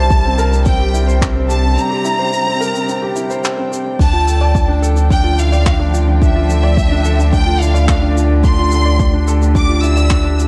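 Moving and intimate, this piano and strings electronica passage in D minor at 108 BPM sets a clear, lush symphonic violin section carrying the melody over veiled, con sordino chords from a distant string quartet and a mellow riff on felt-muted upright piano. Beneath them a round analog bass sits up front with sidechain pumping, while an overdriven electronic kick is joined by a soft brush kit with dark cymbals, handclaps and shaker, all in light studio reverb. A break runs from 1.8 to 4.0 seconds, and as it ends the harmony moves from C7 to Dmadd9.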